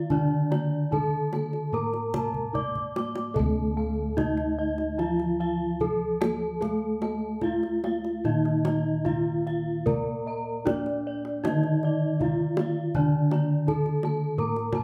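A hypnotic, stately stretch of Javanese gamelan with subtly uneven beats, cut from a longer piece, in which a bronze metallophone melody struck with a wooden mallet rings up front. A mellow, padded-mallet metallophone accompaniment and a dark, smooth horn-mallet metallophone arpeggio line shimmer with paired tuning beneath it, while airy, round bossed gongs anchor the bass and brighter bossed gongs add high arpeggios. A tight, close kendang played with soft hands keeps time and breaks into a fill from 2.3 to 3.4 seconds, all captured live in one room with a lush large-studio reverb.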